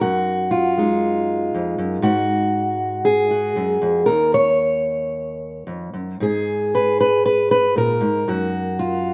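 A fingerpicked steel-string acoustic guitar plays alone, up front with audible finger squeak and a slapback echo, in a short, intimate and haunting folk excerpt in Eb minor at a rubato 117 BPM. Recorded dry outdoors, it spans Eb2 to Db5 and moves through Ebmadd9, Gbsus2 and Absus2 chords for 9.1 seconds.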